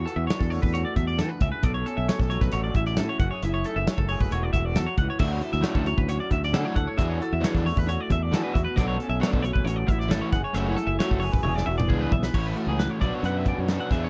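Playful and wistful, this short cut from a longer math rock and midwest emo piece moves at 134 BPM in a straight 4/4. A clean, twangy electric guitar spins bright arpeggios up high, while a second guitar through a small old amp adds slightly broken-up, lo-fi accompaniment, both bathed in lush chorus. A punchy, fingered electric bass and an acoustic studio drum kit, with a punchy kick, medium-tuned snare and a pumping room sound, carry the groove throughout. At 5.2 seconds a double-tracked, overdriven semi-hollow guitar enters with a riff, thickening the texture with a hollow-body growl. Extended chords such as E9sus4, F#m9 and Dmaj9 color the harmony, and a drum fill at 11.4 seconds leads into a brief new passage that opens on Amaj7, all set in a small room ambience.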